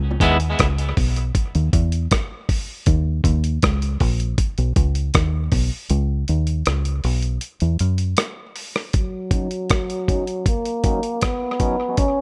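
The recording is dry, with little reverb, in a short cut from a longer hypnotic, deep dub reggae piece at 79 BPM in 4/4 with a straight feel, centred on Eb phrygian. A dark, round fingered electric bass sits up front, foam-muted and amped, carrying the opening break over chords moving from Dbm7 through Eb5, Badd9 and Esus2 before it drops out at 8.1 seconds. A dusty, sampler-style drum kit runs throughout, compressed and gritty, with a thumpy kick, hi-hat and rim click; the kick is muted from 5.9 seconds, thinning the groove before the second section. A twangy, slightly broken-up picked electric guitar gives a brief flick at the start and returns later, low-pass filtered and trailed by tape echo. At 9.0 seconds a bright trombone takes the solo melody over Ebm7 with vibrato and a roomy, distant sheen, also filtered and echoed, as a filter sweep colours the closing passage.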